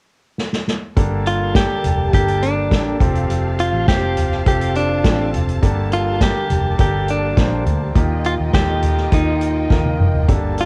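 Piano-driven pop in G minor at 103 BPM, this dramatic, earnest excerpt opens with a soft-mallet drum fill at 0.4 seconds before piano, strings and bass arrive at 1.0 seconds, moving through Gmadd9, Fadd9 and Ebadd9 chords. A roomy, distant drum kit with a punchy kick sits up front with cassette-tape grit, while an intimate concert grand with audible action noise and long sustain carries the accompaniment over a dark, foam-muted fingered bass. A clean, compressed direct-recorded electric guitar picks the melody from 1.3 seconds, and a lush bowed string section with vibrato holds sustained chords in the background, both bathed in plate reverb in a home-cassette sound.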